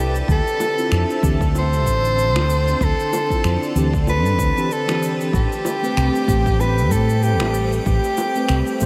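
A bright, close-miked soprano saxophone leads this smooth, relaxed sunset chillout excerpt, playing jazz-style with vibrato and scooped notes through analog delay, while a dark, punchy fretless electric bass sits up front beneath it. In the background, a thick, detuned sawtooth pad with chorus and phaser, a mellow tine electric piano with low-pass filter and delay entering at 0.8 seconds, and a glassy texture of drifting overtones hover over a swung groove of overdriven electronic kick, shaker and finger snaps, plus very quiet, low-tuned bongos. The harmony moves from Dm9 to Am9, and the dreamy mix is soaked in a huge ambient reverb.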